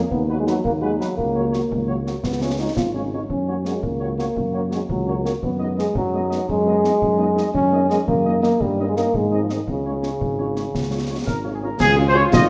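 A rousing, spirited military-style march for wind band in 6/8 at 113 BPM, cut from a longer piece, moves from F# major into Db major at 7.5 s, with a distant, roomy mellow trumpet section carrying the melody over a dark French horn section in the background, an up-front warm euphonium with vibrato on the second line, a mellow tuba bass, close and dry concert bass drum, snare and dark-toned clash cymbals, and a smooth-topped trombone section entering on sustained chords at 11.8 s, all set in a wet recital hall reverb.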